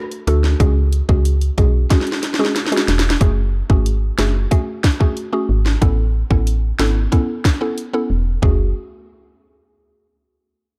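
A mellow, percussive mallet-like synth pluck treated with chorus and phaser opens this tough, hypnotic dancehall excerpt at 92 BPM in F# minor. It is joined almost at once by a tight, electronic island pop drum kit with a sharp snare and a soft, woody FM bass, both sitting up front. A drum fill from 1.9 to 3.2 seconds carries the harmony from D and C#sus4 into F#madd9, which later moves to Aadd9, and the dark, dry production keeps the bass and drums louder than the pluck.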